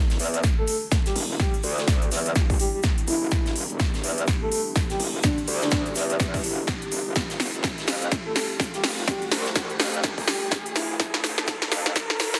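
Swaggering and aggressive, this bass house excerpt at 125 BPM in E phrygian swings its 16ths over a build-up from Em7 to Fadd9 at 7.2 s, with a punchy, tape-warm electronic kick and big-room kit up front, a tight acoustic kit in the background, a metallic, saturated FM wobble bass with sidechain pumping, a breathy flute-like synth lead with vibrato, 12-bit grit and delay, a deep, dark detuned pad, and a very quiet riser entering at 4.1 s, all under a drum fill and filter sweep in a dense, heavily limited master.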